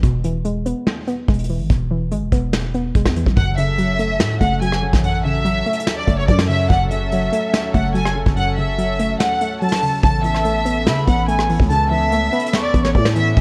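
Trap-flavored hip hop in F# minor at 144 BPM with a half-time feel, this brooding, melancholic excerpt opens on an E chord with a soft, round pluck, nasal and dark under its chorus, a growling, buzzy 808-style bass and a soft brush drum kit of hi-hat, tight kick, rim click and medium-tuned snare sitting up front. At 3.4 seconds the harmony moves to F# minor as a lush studio violin section takes the melody, bowed and smooth with vibrato and a trail of delay, while a warm analog pad with a slow attack holds sustained chords beneath it. The kick drops out briefly from 9.2 to 10.0 seconds. At 10.0 seconds the chord shifts to Aadd9 and a breathy jazz flute enters as a second line, with lifted highs and an unsteady tone, carried on its own delay. The whole excerpt sits in a small room and wears the warble and pitch drift of worn cassette tape.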